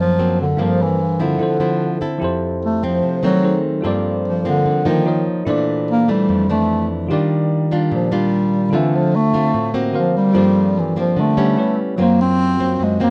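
A straight bossa nova groove in 4/4 carries this melancholic, intimate fragment, cut from a longer piece. Up front, a fingerpicked nylon-string guitar in classical style gives a full-bodied, acoustic foundation, while a tine electric piano adds clean, bell-like accompaniment in a direct, bright voice. The mellow bass clarinet carries the melody throughout, close-miked and sung with a jazz vibrato, and from 2.2 s it takes a solo that runs to the end at 13.1 s. The harmony wanders through rich jazz colours such as Gm11, Bbmaj9#11 and Ebmaj9 before an altered D chord pulls the phrase back around. Light reverb gives the trio a little air, and the whole recording sounds like worn old cassette tape, with a warbly pitch drift that deepens its wistful, faded mood.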